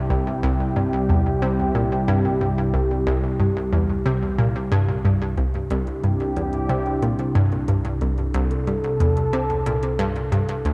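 Ambient, sequencer-driven space music with an expansive, mysterious mood, this excerpt from a longer piece opens on a sweeping resonant pad holding sustained chords, its detuned sawtooth and sine tones evolving through a slow filter swell with chorus. Up front beside it, a round, detuned analog pluck repeats a low riff with a fast attack and short decay, its bright sawtooth and pulse tones carrying chorus and delay. At 5.4 seconds, clicky electronic hi-hats and percussion blips fade in, sitting in the background with delay, all set in a moderate spring reverb within an echo-heavy mix that carries a cassette-tape character.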